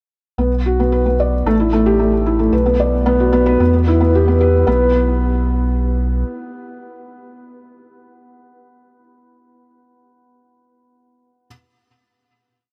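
Intimate and hypnotic, this short piano and strings electronica piece in B minor at 112 BPM places a felt-muted upright piano up front, its mellow arpeggiated 12-step loop drifting against the bar with audible action noise and tape echo, over a deep, round sine sub bass holding sustained roots through Bm, A5, Bm and Em until it stops at 6.2 s. The build gives way at 4.7 s to a final note that lasts until 9.0 s in a huge ambient reverb, and the piano ends at 11.5 s.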